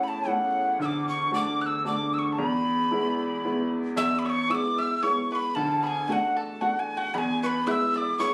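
Celtic folk in a rollicking, cheerful 3/4 at 114 BPM in E mixolydian, this short cut from a longer piece puts a breathy wooden whistle with chiff and vibrato up front over clear, slightly detuned upright piano with audible action noise and a reedy, nasal harmonium drone on E2 in the background, while a twangy fingerpicked banjo joins quietly behind at 4.0 s, all heard through a phone recording in a room with club reverb and compression.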